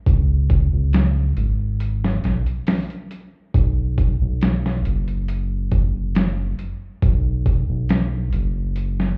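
Heard muffled as if through a wall and steeped in club reverb, this brooding, cinematic trip hop excerpt at 69 BPM pairs an up-front, deep and round analog bass with a gritty, pitched-down boom bap sampler-style drum kit whose thumpy kick, medium-tuned snare and hi-hat carry overdrive and studio reverb, both parts running from 0.1 to 9.2 seconds.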